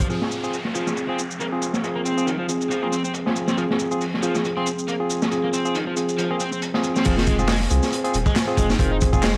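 A dark, detuned analog pad, a crunchy overdriven guitar riff and a saturated breakbeat kit open this gritty, swaggering breakbeat cut in F minor at 138 BPM, with a 55% swing on the 16ths. The pad holds moody, wave-folded chords with a sub octave, chorus and sidechain pumping, while the double-tracked picked guitar carries vintage 12-bit sampler grit, a low-pass filter and delay. The acoustic drums sit up front with a tight kick, a medium-tuned snare and dark, rolled-off cymbals, all filtered and set in a studio room, and a layered electronic shaker and handclaps sit lower in the mix. From 0.1 seconds, bright, barky tine electric piano stabs ring clean and direct with delay, as a downlifter drifts in the background until 3.6 seconds. At 7.1 seconds the drop arrives, and a thick, saturated sine sub bass with a fast attack fills out the low end. Light studio reverb and vinyl crackle add a dusty sheen to this excerpt, which is cut from a longer piece.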